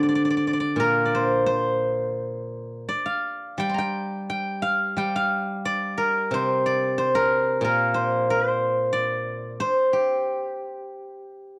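Longing and contemplative, this brief passage of Chinese traditional music features a solo steel-string zither plucked with fingerpicks, its silvery, ringing tone sitting up front in a dry, close 1970s-style studio sound as it unfolds in a free, rubato feel over 11.6 seconds.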